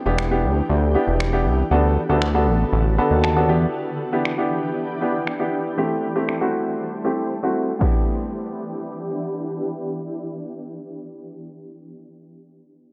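A shimmering, ethereal pad with chorus and built-in reverb opens this confident, bittersweet dance-pop excerpt in E minor at 118 BPM, quickly joined by a natural-sounding baby grand piano that adds a fill at 2.7 seconds, a fat, detuned sawtooth bass with sidechain pumping that plays until 3.7 seconds, and a punchy analog drum machine of kick, finger snaps and crash cymbal that drops out at 7.9 seconds after a brief silent gap, all over Em7, Bm7 and Am7 chords in a lightly reverberant, low-pass-filtered mix.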